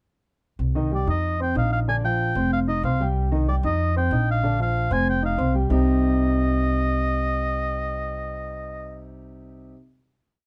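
This Latin piece is short, complete and fiery, with a passionate mood and a straight four-beat feel. An upright bass enters first at 0.6 seconds, its woody, thumpy gut strings plucked up front in a tumbao line that anticipates the chords. A baby grand piano joins with a mellow, vintage piano montuno in octaves, its long sustain filling out a vamp that cycles through Cm, F5 and Bb. Over them a warm solo oboe carries a classical-style melody built on hook phrases, with light vibrato and a smooth top. At 5.7 seconds the vamp gives way to a final chord, and the piece closes at 9.7 seconds, all within a dark production touched by light reverb.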